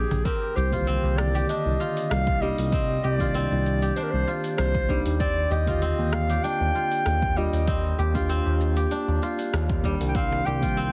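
A lightly swung 16th-note groove at 97 BPM in 4/4 underpins this short organic downtempo excerpt in C minor. An overdriven electronic kick with a deep, layered punch enters at 0.3 s, beneath an overdriven deep house kit of metallic hi-hats, rim clicks and shaker, while a woody cajon played with soft hands sits faintly in the background only at the very start and near the end. Up front, a smooth, detuned synth bass blending sawtooth and square waves pumps against the sidechain, and a crisp, fingerpicked kora rings out arpeggios through digital delay. From 0.7 s, muted, felt-like synth keys add dark, intimate chorused chords over a Cm7 harmony, pumping and trailing delay. A mellow, classical-style clarinet carries the solo melody with tape echo, and the whole mix sits in a moderate echo-chamber reverb with a heavily compressed, radio-like sound, giving it a warm, mystical mood.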